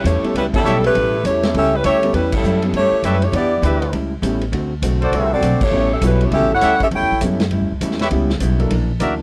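A close-miked saxophone section leads this brassy, energetic big band swing excerpt, carrying the melody with vibrato and a soft attack before dropping out at 7.2 seconds. At a brisk 201 BPM in A mixolydian, the band swings over a progression that starts on A7 and moves through Em7 and D7, closing on C#m7b5 and F#aug7. A trumpet section with a smooth top adds stabs, and the full band hits accents at 0.5, 2.3 and 5.6 seconds. Up front, a woody pizzicato upright bass anchors the low end, while a vintage drum kit in a small, pumping room brings a punchy kick, dark cymbals and a rolled-off top. In the background, a clean, picked hollow-body electric guitar and a concert grand piano with deep bass fill out the accompaniment, all in a dry mix with little reverb.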